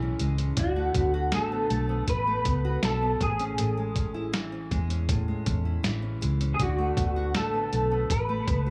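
A fingerpicked nylon-string guitar and a dark, round, foam-muted electric bass open this dreamy, nostalgic excerpt of bedroom-style indie pop, moving between Amaj7 and D6 at an unhurried 80 BPM in a straight 4/4 with a D lydian colour. The classical guitar is bathed in a lush chorus and a warbly pitch drift, while the punchy, amped bass sits low beneath it. At 0.2 seconds a lo-fi sampler-style drum kit arrives up front with hi-hat, a thumpy kick and a medium-tuned snare, its compressed, pitched-down, muffled sound carrying a tape-warm character. By 0.6 seconds an electric guitar through a small old amp takes the melody, slightly broken-up and picked, sitting up front with ensemble chorus and tape echo. Light reverb and a small room ambience wrap the whole arrangement in a hazy, intimate glow.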